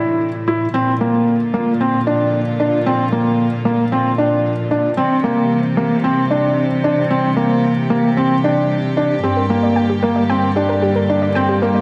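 Piano and strings electronica at 113 BPM, intimate and hypnotic, where an up-front felt-muted upright piano with audible action noise repeats a delayed riff over a floating string section fading in, an earthy, distant cello section on bass, a very quiet overdriven electronic shaker, and a warbling, lo-fi detuned pluck that adds chorused, delayed arpeggios at 9.2 seconds, moving through Am, Bb, C and Gm in a dark production with a wet scoring-stage reverb in this excerpt from a longer piece.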